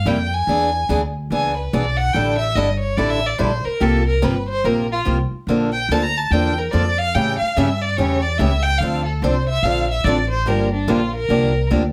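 A moderate studio reverb frames this fiery, swinging jazz manouche excerpt in D minor at 144 BPM, where a rich, smooth bowed violin with vibrato and a slapback echo carries a solo melody over woody pizzicato upright bass and a picked parlour steel-string acoustic guitar with fresh strings, through changes including Bbmaj7, A7 and Dm7.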